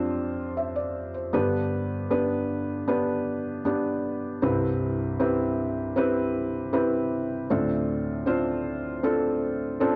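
Emotional and heartfelt, this 10-second excerpt from a longer pop piece in C major at 78 BPM features a solo felt-muted upright piano, soft, mellow and intimate, sitting up front in a small room with cassette tape character, moving through Dm7/F, G, Cmaj7 and Dm7 before a brief felt piano fill at 9.4 seconds.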